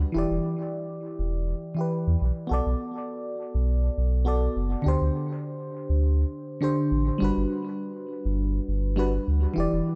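A soft, round FM electric piano with a dark noise-layered edge, colored by chorus, phaser and analog delay, plays Em7, Bm7, D7sus4 and Gmaj7 over a deep, sine-like sub bass that sits up front until 9.8 seconds, giving this wistful, warm sunset chillout excerpt at 102 BPM a gently swung 16th-note feel inside an echo-heavy mix with light reverb.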